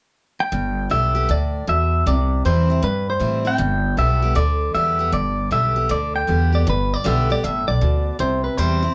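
The clean electric guitar opens at 0.4 seconds with a bright, twangy, compressed melody up front, joined at 0.5 seconds by a woody, thumpy pizzicato upright bass and a full-bodied picked steel-string acoustic guitar picking out G and C chords in this upbeat, retro rockabilly excerpt at 156 BPM with a swung feel in G major, the trio playing live together in one room with light reverb until 8.9 seconds.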